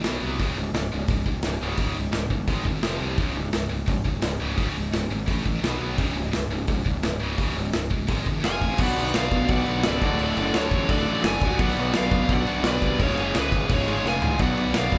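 Driving straight 4/4 at 171 BPM in C# phrygian dominant, this dark, heavy metal cut opens with two bright, picked rhythm guitars riffing in the background over a growly fuzz fingered bass and an up-front big rock drum kit with punchy kick. At 8.4 seconds a dark high-gain lead guitar enters with a second line, and at 8.5 seconds a brighter high-gain lead guitar follows with the melody. They are joined at 8.8 seconds by a double-tracked fuzz guitar riff as the band plays live in one room with light reverb and drum fills at 8.6 and 14.0 seconds.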